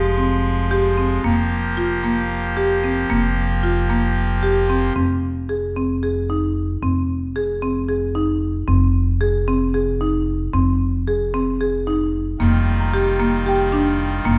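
In a dark recital-hall space, this restless, hypnotic fragment of contemporary chamber music in 7/8 at 226 BPM in F minor sets an up-front, woody marimba on padauk bars arpeggiating over a growly pizzicato upright bass holding F1, while a brassy, chiffing trumpet-stop pipe organ sustains baroque-voiced chords until 4.9 seconds and returns at 12.4, and a delicate, slightly out-of-tune celesta adds sweet bell-like texture in the background from 12.8 seconds.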